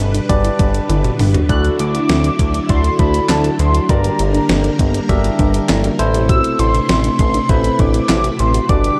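Synth-pop at 100 BPM in 4/4 with a straight feel, this bright, upbeat excerpt is cut from a longer piece and moves through G, Dadd9, Gm and Amadd9. A shimmering string machine with violins holds sustained chords under an ensemble chorus, while a warbly, dusty pluck sits in the background playing arpeggios through chorus and slapback echo. A glossy, nasal chorused synth bass is placed up front beside a clean 12-bit digital drum machine with a thumpy kick, fat snare, hi-hat, handclaps and toms, which plays a fill from 0.9 to 1.5 seconds. A barky tine electric piano adds accompaniment through a phaser, and at 1.5 seconds a velvety synth lead enters with the melody high in its register, detuned and smooth with vibrato, chorus and slapback echo. Light reverb and digital ambience give the mix a dark, warm production.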